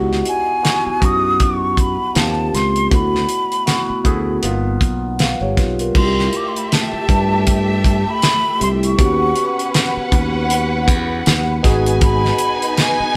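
A lightly swung sixteenth-note feel at 79 BPM in 4/4 drives this lush 1970s-style soul excerpt, with a dry, damped drum kit up front (fat snare, tight kick, hi-hat and crash) under a growly, punchy fingered electric bass. A barky tine electric piano, lightly overdriven and phased, moves through chords from C#m11 through G7alt and C69 to G#m7, while a breathy, tongued concert flute carries the melody with vibrato. At 5.9 s a bowed studio string section joins with a smooth, expressive second line, the whole band sharing a moderate room reverb.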